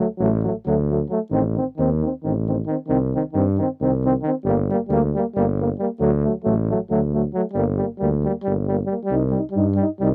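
Balkan folk in the brass band tradition, this short excerpt moves in a straight 7/8 with a bittersweet yet fiery mood, its harmony circling through minor and diminished chords. Two euphoniums carry the accompaniment in a classical style, one higher with a light vibrato and the other lower, present and up front, while a tuba anchors the bass from 0.2 seconds with a distant, roomy tone touched by transformer saturation. The sound is that of a dry, close 1970s-style studio recording with light reverb.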